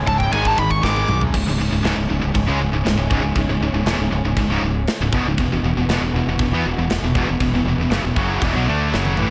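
Heavy metal in C# minor at 118 BPM, this relentless, heavy passage is cut from a longer piece and runs a little over nine seconds in a straight 4/4. It opens with a brief solo from a dark, bluesy lead guitar, distorted and touched with delay, that sits up front from 0.1 to 1.2 seconds before dropping out. Beneath it, three picked rhythm guitars drive a riff throughout: two bright high-gain parts with distortion and a double-tracked overdriven part, all set in the background. A growly, direct fingered bass sits up front in the low register, while a polished acoustic drum kit with bright china and crash cymbals, a medium-tuned snare, a tight kick and toms plays in an airy big room, with fills at 0.8 and 8.9 seconds. A lush, bowed symphonic string section holds smooth, focused chords with vibrato in the background as the harmony settles on C# minor from 1.3 seconds, with a shift to E5 at 5.4 seconds, all in a dry mix with little reverb.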